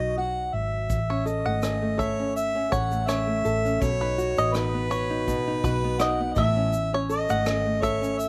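Acoustic pop excerpt at 82 BPM in 4/4 with a light sixteenth-note swing and a carefree, easy-going mood, where a mellow harmonica carries the melody up front over a fingerpicked nylon-string guitar and a dark, round, foam-muted electric bass, a roomy kit played with bundle sticks enters at 0.9 seconds with tight kick, rim click and shaker, and a bright, twangy banjo picked with fingerpicks adds percussive arpeggios with slapback echo from 1.1 seconds, all in a fairly dry mix that moves between B and A chords.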